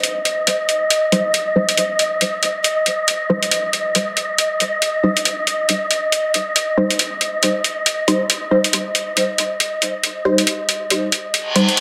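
A gritty, overdriven electronic hi-hat and an airy, breathy wind-like noise texture on Eb5 open this brooding deep dubstep excerpt in C minor at 138 BPM with a swung half-time feel, joined at 1.1 s by muted, nasal filtered chord stabs with phaser and dub echo, all set in a wet spring reverb before a reverse cymbal rises in at 11.4 s.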